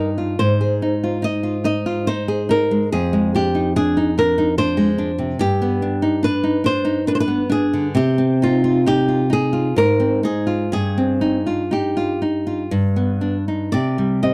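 A flamenco guitar and a nylon-string guitar begin together in a melancholic, elegiac romantic duo in a rubato 3/4. The fingerpicked flamenco guitar carries a warm melody, with audible finger squeak, over the bright, full-bodied classical accompaniment of the nylon-string guitar, and harmonies move from Ab through Dm7b5/F and G to Cm before settling on a bare C5 at 13.7 seconds. Both instruments sit up front in a dry, close 1970s-style studio sound touched by light reverb, and the passage is cut from a longer piece.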